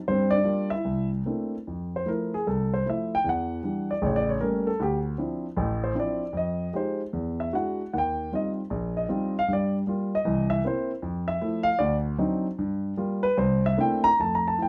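A dark, mellow grand piano carries this relaxed, swinging solo jazz passage, cut from a longer piece. It sits up front in a light reverb, with audible action noise lending it an intimate, vintage character. After a brief opening turnaround on Gm7 and C13, the piano settles into its solo at 1.7 seconds, moving with a loose rubato swing through rich chords such as Fmaj7, A7b9, Fm9 and Eb69 before closing on C13 at 14.7 seconds.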